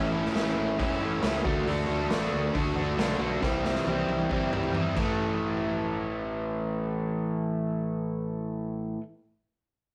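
A straight 4/4 pulse at 136 BPM drives this raw, swaggering garage rock fragment, cut from a longer piece and captured as a rough rehearsal-room recording with tube saturation and a wet studio reverb. An overdriven, double-tracked electric guitar sits up front playing the riff from 0.0 to 9.0 seconds, its picked tone warm, moving through A, D and C before landing on an A5 power chord at 5.0 seconds. Beneath it, a growling fingered electric bass with its own overdrive holds down the low end across the whole stretch, bright and amped. The raw garage drum kit enters at 0.3 seconds with punchy kick, medium-tuned snare, hi-hat, crash and toms, sounding saturated in a pumping stone room, and rolls into a fill from 3.4 seconds before dropping out at 5.1 seconds. From there guitar and bass carry the second section on their own, keeping the rough, rehearsal-space swagger intact.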